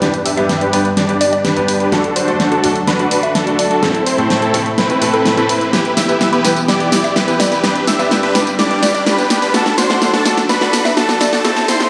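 Festival progressive house build-up cut from a longer piece, powerful and euphoric, where huge, detuned supersaw chords and a huge-snared, layered drum kit sit up front through a constant drum fill and filter sweeps on both the supersaw chords and the thick, dark arpeggiating unison lead, while a woody, round mallet-like synth pluck melody, a brilliant grand piano with audible action noise and a lush sub-octave pad float in the background, joined by a very quiet riser entering at 2.6 s, all beneath a huge ambient reverb.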